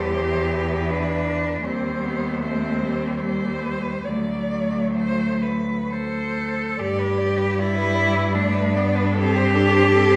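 A wet recital-hall reverb of about 1.3 seconds surrounds this short passage from a longer classical piece for cello ensemble, recorded in a church or concert hall. The mood is tender and serene, and the music moves in a flexible, rubato three-four. Four bowed cellos, each a single player, sound throughout. The top cello carries the melody in a rich tone with vibrato, a soft attack, portamento and expressive phrasing, while a second cello, placed up front, sings a smooth, even inner line with vibrato. Below them, a more distant, warm-toned cello fills in the accompaniment with vibrato and portamento, and a full-bodied bass cello, also up front, holds the low register with smooth, even bowing. The harmony drifts through C/E, Cm/Eb and Eb6 to D, then a new section opens on G at 6.8 seconds and settles on Am7/G.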